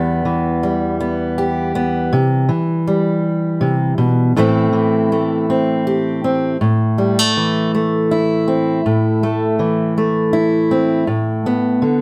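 In an unhurried 3/4 at 80 BPM with a straight feel, this reflective, wistful folk fragment in A minor features a single fingerpicked steel-string acoustic guitar, up front and warm under light reverb, ranging from E2 to G4 as it moves from Em through C to Am, then shifts into a second section at 6.6 seconds before closing on a rootless Gadd9/A at 11.1 seconds.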